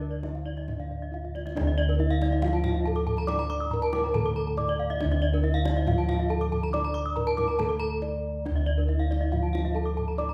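Hypnotic and brilliant, this excerpt of Balinese gamelan moves at 139 BPM in a straight 4/4, set in a D pelog tuning pitched slightly above standard. The bossed gongs anchor the bass, sounding round and beating from padded beaters and sitting up front in the mix. A mellow bronze metallophone, struck with padded disc mallets, carries the melody with the shimmering beats of paired tuning, while a second, mid-forward metallophone plays the lower accompaniment. Above them run two layers of arpeggios: one ringing from a wooden mallet, the other bright and airy from a horn mallet. The soft-handed kendang enters at 0.2 seconds with a deep, distant tone and plays a drum fill at 1.2 seconds that opens the longer second section, and a brief break arrives at 7.8 seconds. A lush recital-hall reverb, like that of a church or concert hall, surrounds the whole ensemble.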